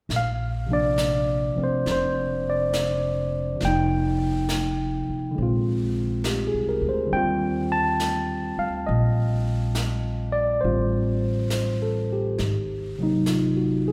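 A wet concert-hall reverb surrounds this tender, intimate jazz ballad excerpt at 68 BPM in Bb major, swung in 4/4. A barky, clean tine electric piano sits up front through a combo amp, voicing rich chords such as Bbmaj9, Ebmaj9 and Ab9. Beneath it, a woody, thumpy pizzicato upright bass and an airy, polished brush kit of snare and hi-hat play from 0.1 seconds to the close at 13.9 seconds.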